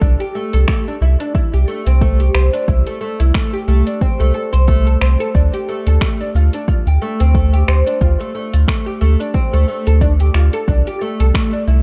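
Set at 90 BPM in 4/4, this organic downtempo groove has a gentle swing on the sixteenths. An overdriven electronic kick drum with a deep, layered sound drives it until 11.5 seconds, alongside a deep house kit of cabasa, finger snaps and metallic hi-hats that carries its own gritty overdrive and the air of a large room. A round, sine-like sub bass sits up front, sustaining mellow low notes beneath everything. Over it, a fretless oud plays woody, plectrum-plucked arpeggios on doubled strings, trailed by analog delay. The harmony rests on C, moves to D minor at 5.3 seconds and returns to C at 10.7, giving this meditative, warm fragment of a longer piece a dry yet echo-heavy sound.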